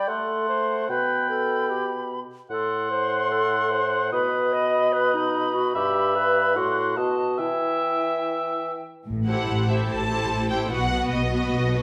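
A straight 4/4 pulse carries this fast, stormy passage from a Romantic symphonic movement, where restless harmony circles through diminished, dominant and minor chords before settling on the dominant. For roughly the first nine seconds the woodwinds hold the stage. A clear clarinet, a mellow, punchy cor anglais placed up front and a pure, metallic concert flute with a soft attack share the upper lines, while a roomy bassoon supplies the accompaniment low beneath them. At 9.1 s the strings take over, with a lush cello section and a woody double bass section laying down the bass as the cellos sit in the background. At 9.3 s the violins arrive with a smooth, close melody up front, joined by a second, expressive violin line and rich, distant violas filling in the accompaniment, every string section bowed with vibrato. A wet recital-hall reverb gives the whole orchestra a dramatic sense of space.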